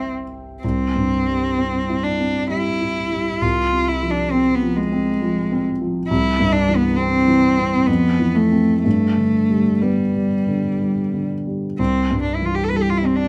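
A light reverb surrounds a close, intimate sound, with both instruments placed up front in this short passage taken from a longer romantic piece for cello and grand piano. The mood is tender and serene, moving in a slow 3/4 at roughly 56-70 BPM with a flexible rubato feel in C major. A single bowed cello carries the melody from start to finish, its tone rich and smooth, even in line and coloured by vibrato. The concert grand accompanies throughout, dark and mellow with deep bass, a vintage character and audible action noise from the instrument's mechanism. The harmony drifts from C through a darker F minor over C, returns home, then passes through Fmaj7 and G before settling back on C at 11.8 seconds.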